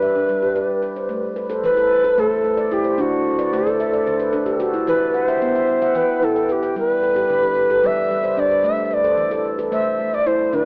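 In a straight seven-beat pulse, this gentle, hypnotic piece of meditative world music sets a mellow cedar flute, in a Native American style, over ringing handpan arpeggios. Both play from the first moment of this short fragment, cut from a longer piece, to its end at 10.7 seconds. The flute carries the melody up front, with a woody, airy tone, chiff on crisp attacks, vibrato and rolled-off highs, all colored by cassette tape, plate reverb and analog delay. The handpan, close-miked and full, sounds stainless steel under soft fingertips, with its own plate reverb and analog delay, and it breaks into a fill from 3.4 to 4.9 seconds. Harmony cycles calmly through G, Am, D and Em, and the whole track sits in a damp small room with the hazy, lo-fi character of a home cassette recording heard over AM radio.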